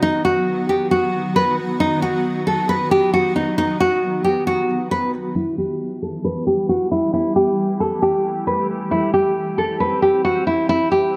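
Heard in a small, lightly reverberant room, this menacing, hard-hitting half-time hip hop excerpt puts a deep, fingerpicked nylon-string guitar melody up front under a low-pass filter, over a cloudy, blurred granular pad of slow-attack sine chords with its own reverb, and a filter sweep runs from 5.4 seconds as the harmony moves from B to Em and then to C at 8.9 seconds.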